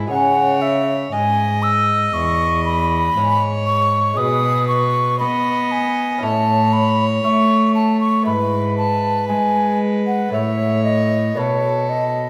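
A baroque flute carries the melody with an airy, wooden tone, crisp attack and vibrato, entering at 0.1 s in this radiant, flowing baroque-style sonata movement at 59 BPM in straight 4/4. Beneath it, a bowed period-style violin traces a second line with gut-string tone and light vibrato. A dark, reedy cello sits up front on the bass, while a delicate fingerpicked lute with double strings, some octave-doubled, fills in the accompaniment from the background. The harmony moves from C#m through A and E/G# to a closing B7 in a moderately reverberant recital hall, an excerpt cut from a longer piece.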